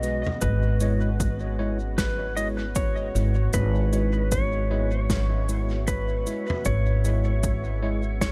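This hazy, deep ambient dub fragment opens with an upright bass, plucked and woody with steel-string growl, sitting up front, while a clean lap steel guitar carries the slide melody through dub echo. Beneath them, a dark sawtooth pad holds sustained chords, its detuned unison and sub octave softened by chorus and its own reverb far in the background. A bright, barky tine electric piano adds echoing stabs roughened by vintage 12-bit sampler grit, and it drops out at 8.0 seconds. A loose acoustic kit of cabasa, fat snare and toms, with a pumping room sound and dub echo, keeps a swung sixteenth-note feel. At 0.4 seconds an overdriven, punchy electronic kick joins low in the mix as the harmony settles on C#m/G#, and the whole is a short cut from a longer piece with little room reverb.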